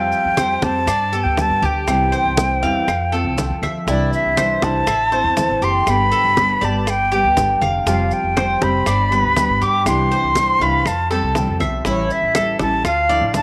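Bathed in a moderate spring reverb, this sunny Cuban son and guajira fragment puts an airy, expressive jazz flute with vibrato and a soft attack up front over a full-bodied fingerpicked nylon-string guitar, a metallic double-strung Cuban tres picking arpeggios, and a dark, thumpy pizzicato upright bass, while tight high-tuned bongos, low-tuned congas and grainy maracas sit in the background alongside very quiet woody claves.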